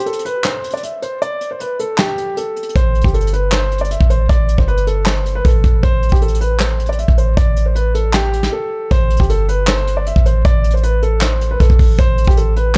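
A half-time trap groove at 156 BPM comes from a soft brush kit of punchy kick, medium-tuned snare, hi-hat and handclaps, set up front in a menacing hip hop excerpt. A mellow baby grand carries the melody with long sustain and tape echo over Gsus2 and Am chords, and a deep, boomy, sine-like 808-style bass enters at 2.8 seconds. Small room reverb and a dark, warm production frame the piece.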